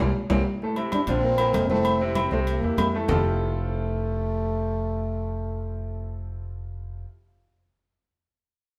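A mellow, close-miked French horn carries the solo melody from 0.9 s in this joyful, sunny salsa excerpt at 193 BPM in F major, set in a wet large studio reverb. Up front beside it are a brilliant, polished upright piano accompanying through chords such as Fmaj7, Bbsus2 and C7, and a dark, woody pizzicato upright bass with a thumpy gut-string tone. A drum fill and band accent open the clip, with high-tuned congas struck with hard hands in the background and ringing metal-shell timbales and agogo bells, both dropping out at 3.2 s.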